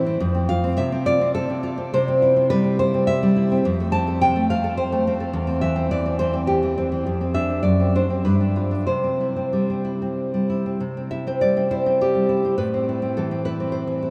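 A fingerpicked nylon-string guitar sits up front in this excerpt from a romantic solo classical piece, its dark, full-bodied tone ranging from E2 to A5 with audible finger squeak. Played with rubato in 3/4 around 92-109 BPM in C major, the intimate, melancholic phrase moves from F and C through Dm7/F, D7/F# and G7 back to C at 8.9 seconds, then turns toward Am near the close. A huge ambient reverb with a 7.2-second tail places the guitar in a vast, echoing space.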